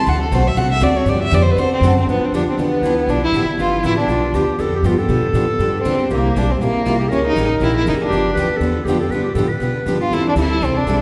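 A warm, bowed violin with expressive vibrato and portamento opens this lively, charming acoustic string swing excerpt at 239 BPM in G mixolydian, backed by two bright picked steel-string acoustic guitars (one full-bodied, the other boxy with finger squeak in the background) and a woody, thumpy pizzicato upright bass up front, before a breathy, soft-attacked clarinet enters with a clear second line at 2.1 s, the whole ensemble heard in a reverberant recital hall.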